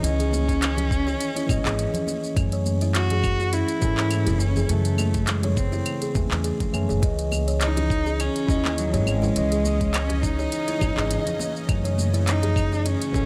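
Set in a lightly reverberant small room, this mystical, warm organic downtempo excerpt in C# minor moves at 103 BPM with a gentle 16th-note swing, as a dark, expressive bowed cello with vibrato and portamento carries the melody through digital delay over mellow tine electric piano chords roughened by vintage sampler grit and sidechain pumping, a buzzing, woody kalimba playing arpeggios through delay, and a pizzicato upright bass with tube saturation. The groove comes from a tape-tinged electronic kit of claves, handclaps, crisp hi-hat and shaker, very quiet ringing congas and bongos, and a thumpy, overdriven electronic kick, while a tense, detuned, string-like drone with phaser and vibrato enters in the background at 8.4 seconds.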